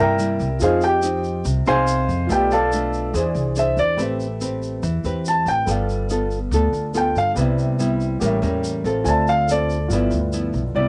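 Romantic and sophisticated, this bossa nova excerpt at 142 BPM features an up-front concert grand piano with deep bass and short sustain soloing over a fingerpicked nylon-string guitar with old, full-bodied strings, a background baby grand piano, a woody pizzicato upright bass and a grainy, vintage egg shaker, with both pianos and the guitar carrying a cassette-tape color, all set in a snug booth ambience through a jazzy run of seventh, ninth and altered chords.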